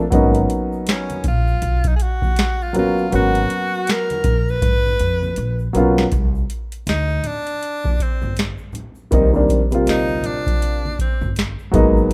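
Jazz-hop with a cool, smoky mood, moving at 80 BPM in 4/4 with a 61% swing on the sixteenths, cut from a longer piece. A dark, mellow baby grand piano sits up front with audible action noise and a vintage, intimate character, carrying the harmony from an Abm11 chord into C7sus2 at 6.1 seconds. Beneath it, a woody, growly pizzicato upright bass holds the low end while a booming analog drum machine pushes a deep kick, crisp snare and metallic hats forward, with a drum fill arriving at 4.6 seconds. A bright tube shaker and congas sit distant in the background, as if in a large room. The edgy, forceful tenor saxophone enters at 0.9 seconds with punchy vibrato, then takes a jazz-style solo over a break from 6.1 seconds, all in a rough home demo mix with light reverb.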